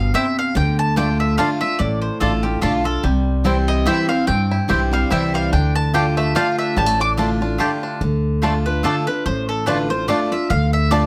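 Rustic and driving, this bluegrass excerpt moves at 145 BPM in a swung 3/4 with a D dorian flavor, moving between C and Dm under light reverb. An up-front picked mandolin carries the melody, with its double strings sounding woody, while a second mandolin adds stabs, a bright dreadnought acoustic guitar with fresh strings gives full-bodied accompaniment, and a dark, thumpy pizzicato upright bass with gut strings anchors the low end. A twangy, percussive banjo played with fingerpicks joins with arpeggios at 3.0 seconds, and the lead mandolin takes a solo from 8.0 seconds.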